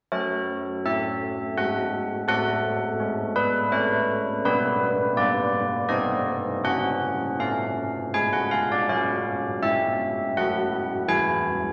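Old church bells carry this wintry, solemn classical bell tune alone, their bronze, clangorous strikes from a worn iron clapper sounding up front with a dark minor-third overtone and audible beating. Moving through F# minor at 83 BPM in 3/4, the passage ranges from E3 to G#5 and shifts through chords such as G/B and Cm6 before settling on C#m/E near 11.1 seconds. A wet concert hall reverb with a 1.9-second decay surrounds the ringing, and the recording is cut from a longer piece.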